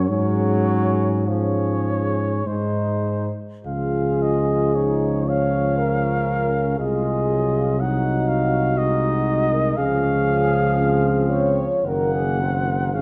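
In a rubato three-four lilt, this serene, tender hymn-like classical brass band passage, cut from a longer piece, unfolds slowly. A close-miked solo cornet sings the melody with vibrato over a smooth-topped French horn section carrying a second line, while a clear trombone section with light vibrato and a distant, roomy solo trombone sit in the background as accompaniment. A mellow, up-front tuba anchors the bass, and the music moves into a new section at 3.7 s, coming to rest on an Ebm/Gb chord at 11.8 s within a moderate concert hall reverb.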